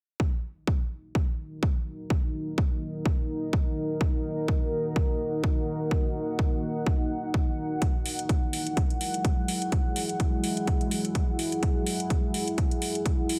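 Heavily compressed with a radio-like squeeze and a light reverb, this gritty, bouncy bass house excerpt opens on a punchy, tape-warm electronic kick drum sitting up front. Two deep, moody ambient pads enter around 1.4 seconds: one holds evolving sustained chords in a lower register with detuned sawtooth unison and a sub octave, while the other adds a higher, darker texture, and both pump against the kick with chorus and their own reverb. At 7.8 seconds metallic electronic hi-hats join as the harmony moves from Ebm to Eadd9.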